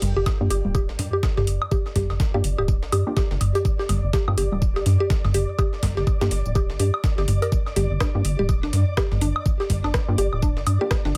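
A swung 4/4 groove in hypnotic, sparse minimal techno is driven by a knocking, overdriven electronic kick that lands at 0.3 seconds, layered with a garage kit's metallic hats and rim clicks, a gritty breakbeat sampler-style kit of hi-hat, high-tuned snare and tambourine, and tape-warm electronic toms, congas and woodblock fed through delay. Underneath, a rubbery, saturated square bass pumps against the sidechain, while a woody, mallet-like synth pluck carries the riff with chorus and tape echo. A muted dub chord stab colours the space with phaser and delay, and a flickering, grainy texture holds a single bright note above it all in this short cut from a longer piece.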